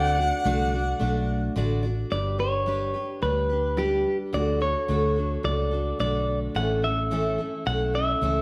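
A warm harmonica with light vibrato takes a brief, classical-style solo at the start of this nostalgic, down-home country excerpt, sounding distant and roomy yet up front before it drops out at 1.6 seconds. Beneath it, a pedal steel guitar adds bright, compressed chords in the background, played with fingerpicks and a slide and shaped by volume swells, until 2.1 seconds. From there a clean electric guitar carries the melody, picked with a twangy, compressed tone that sits close to the listener. A woody dreadnought acoustic guitar with old strings plays a picked accompaniment throughout, while a vintage foam-muted fingered electric bass gives a dark, round, punchy low end. The straight 4/4 groove moves from D to G, back to D and on to A, all set in a moderate recital hall reverb, and the excerpt is cut from a longer piece.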